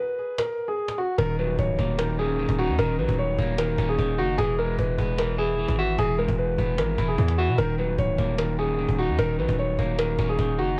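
A half-time trap groove at 150 BPM in 4/4 opens this hard-hitting, menacing hip hop excerpt in Eb phrygian, its chords moving between Ebm7 and E. A woody, compressed cajon with faint snares and a saturated edge carries the beat alongside the warm concert grand piano, which plays the melody between Gb4 and Db5 with deep bass and an up-front presence through a brief opening break. At 1.2 seconds a distorted 808-style bass arrives, heavy and aggressive, its sine tone layered with noise, striking with a fast attack and decaying as it sits up front from Db1 to B2. Entering at the same moment, a fingered, twangy electric guitar at the edge of break-up adds slightly broken-up accompaniment from Eb3 to E5. The whole mix sits in light reverb and small room ambience, colored by worn, warbling old cassette tape with a warbly pitch drift.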